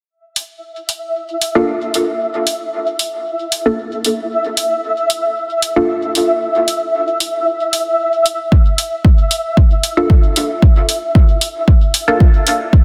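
Dub techno at 114 BPM in 4/4, cut from a longer piece, with a nocturnal, deep mood set in a moderate echo-chamber reverb and a dense, heavily limited master. A grainy, flickering texture with a slow attack and long release hovers on E5 from 0.8 seconds, pumped by sidechain and bathed in its own reverb, while an overdriven analog hi-hat ticks from 0.4 seconds. Muted sawtooth chord stabs with a fast filter pluck, chorus, phaser and dub echo sound from 1.6 to 5.9 seconds and return at 10.0 seconds, and a layered, overdriven kick drum arrives up front at 8.5 seconds.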